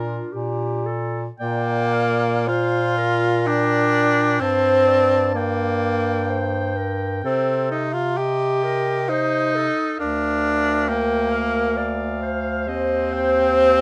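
A mellow tenor saxophone sits up front in this lyrical classical passage for single-reed quartet, carrying the accompaniment with vibrato. Above it, a soprano saxophone sings the melody with a warm, smooth top and its own vibrato. A clarinet weaves a second line that sounds distant and roomy, while a clear bass clarinet anchors the low end. The quartet moves in an unhurried triple metre with a free, rubato feel, passing through a tender progression that opens on Bb and settles onto Cm/Eb at 12.7 seconds. Light reverb frames the ensemble in this short, 13.8-second section taken from a longer piece.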